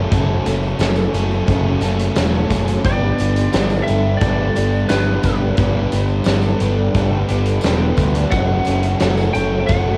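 A growling, overdriven bass sits up front in this melancholic, brooding shoegaze and dream pop cut, moving from F#m to Gadd9 and back under a huge arena drum kit with a punchy kick and big-room snare, plus a faint, jingly tambourine. Two overdriven guitars play riffs, one compressed and bathed in reverse reverb, the other a hollow-body part with subtle chorus set in the background, while a very quiet twelve-string acoustic adds shimmering, octave-doubled arpeggios. At 2.9 s a bright, twangy lead guitar enters with a slightly broken-up melody trailed by tape echo, and the whole home cassette recording carries a light reverb.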